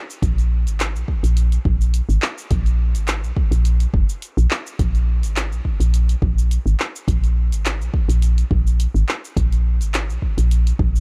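Meditative and hypnotic, this organic downtempo groove moves at 105 BPM in 4/4, with a light swing on the sixteenths, and it is cut from a longer piece. A deep house drum kit of cabasa, handclaps and hi-hat enters at 0.1 seconds, sitting back in the mix with a layered, produced character that was re-recorded in a small room. The electronic kick drum arrives at 0.2 seconds, deep and up front, also layered and carrying that small-room texture. A woody FM bass joins at the same moment, soft and round with a fast attack and a decaying tail, moving between F1 and Bb1 close to the listener. The production is dark and warm with little reverb, keeping the whole passage intimate and steady through its single section until 11.0 seconds.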